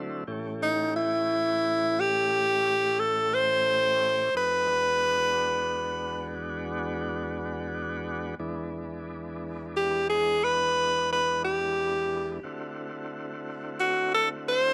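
An edgy, punchy tenor saxophone leads this slow blues from 0.6 seconds, playing a forceful jazz-style solo up front with scooped notes that give it a swaggering, soulful character. Beneath it, a tonewheel organ holds sustained chords from the very start, its smooth, clean tone shimmering with vibrato through a slow rotary speaker and sitting well behind the horn in the balance. The tempo is a relaxed 59 beats per minute in 12/8, played with a straight feel. The harmony moves from A7 to E9 at about 4.3 seconds and then to D9 at 12.4 seconds. A moderate club reverb places both instruments in a club setting, and the clip is cut from a longer piece.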